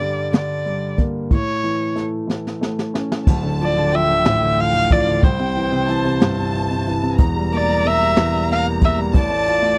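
A slow six-eight pop ballad at 61 BPM, counted in dotted quarters with a straight feel, settles into D minor from 3.3 s in this dramatic, melancholic excerpt cut from a longer piece. A rich, earthy erhu carries the melody up front, bowed with light vibrato and portamento by a single player. A clear concert grand piano accompanies from deep bass up into the middle register, intimate and polished, with long sustain and audible action noise. A jazz brush kit plays dark cymbals, a high-tuned snare and a boomy kick through a rolled-off top, and a drum fill from 2.3 s leads into the second section. There a lush symphonic violin section joins as a second line, bowed with a soft attack and expressive vibrato, while the chords move from Dmadd9 through C and Edim to Dm/A in a dry, close studio sound with a 1970s character.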